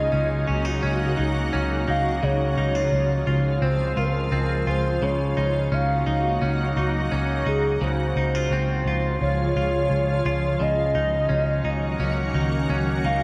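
Bathed in a long church-like reverb of 3.3 seconds, this short dream pop excerpt drifts at 86 BPM in a straight 4/4, its floating mood built on a gentle sway between Ebm7/Db and Dbmaj7. A hollow, woody clarinet-like synth lead carries the melody with chorus, vibrato and analog delay over a shimmering, ethereal pad of detuned, slow-blooming chords. A direct-recorded clean electric guitar picks twangy, compressed arpeggios through lush chorus and delay, while a dark, round, foam-muted picked bass sits up front on a steady Db.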